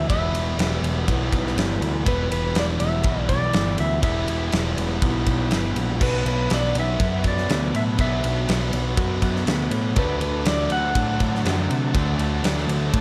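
Classic rock with a swaggering, brooding feel, this cut from a longer piece sets a clean lap steel guitar singing the slide melody with volume swells over a bright distorted electric guitar riff, a sludgy distorted guitar riff in the background, a growling overdriven bass up front, and a big, dark, punchy acoustic drum kit, while a very quiet, gritty tonewheel organ holds thick sustained chords through a slow rotary speaker as the harmony moves from Em to Bm to D in a reverberant studio space.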